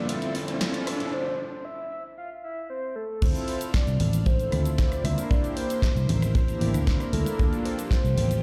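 A short nu-disco excerpt heard through a big sound system in a bare stone room with faint mains hum, this sensual, sleek D minor groove at 115 BPM opens with a riser, a soft octave-layered synth lead with chorus, phaser and tape echo, a smooth detuned analog pad and a lush, pumping string machine in the background over a punchy house kit, then drops at 3.2 seconds into a dry, tight kick and a dark, round picked bass up front, with very quiet hard-hand congas joining at 4.0 seconds as the chords move from Dm7 to C7 to Gm9.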